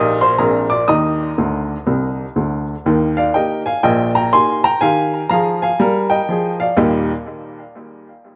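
A wet spring reverb and studio ambience surround an intimate, up-front upright piano, whose woody tone carries audible action noise and a short, natural sustain. This exuberant, swinging stride jazz passage is cut from a longer piece and rides a lilting swing feel in 4/4. The solo piano spans a broad register from the low bass to the high treble, its sound colored by an analog delay. A piano fill arrives at 1.4 seconds and runs until 2.9 seconds, and the harmony moves from a Bb9 toward a Bb7 chord over an Eb bass before settling home. The piano lands on an Eb chord at 6.8 seconds and stops at 7.1 seconds.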